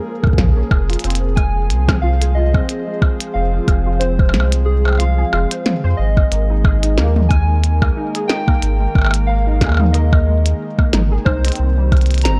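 Cerebral and eerie, this short IDM fragment from a longer piece moves at 91 BPM in 4/4 with a light swing on the sixteenths, set in a dark, warm digital ambience. Warbly lo-fi synth keys carry the melody from the opening, their square and sawtooth tones nostalgic and vintage, with a filter sweep, chorus and digital delay. Beneath them a detuned, tape-like pad holds sustained chords with a slow attack and long release, coloured by chorus, built-in reverb and gritty 12-bit sampler texture. A dusty, mellow pluck spins arpeggios through ensemble chorus and tape echo. A soft electronic kick sits up front from 0.2 seconds alongside a glitchy kit of tiny snare, clicky hats, toms and percussion blips, both re-recorded in a small room. A round sine sub bass joins at 0.4 seconds, deep and sustained, as the harmony drifts from Bbm7 and Fm through Absus2 to Cm.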